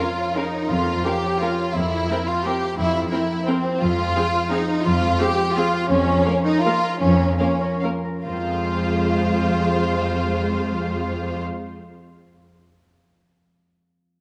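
Bittersweet and dark, this short classical excerpt in F minor moves in a rubato 3/4, its tempo drifting between 134 and 189 BPM and slowing between 5.4 and 8.3 seconds. A concert harp rings out warm, fingerpicked arpeggios from the start, while a clear, focused violin section carries a lush, up-front second line and a violin section in the background holds the melody, smooth and even yet distant. A clear viola section adds its own lush, vibrato accompaniment from afar, and a close, rich cello section enters at 0.7 seconds to anchor the bass on a low F. The harmony turns through Bbm/F, C7/F and Fm over a pedal F, shifting into a brief new section at 8.3 seconds, and the harp rings on alone until 12.1 seconds after the bowed strings stop. A moderate concert hall reverb and a dark, warm production give the ensemble an enveloping depth.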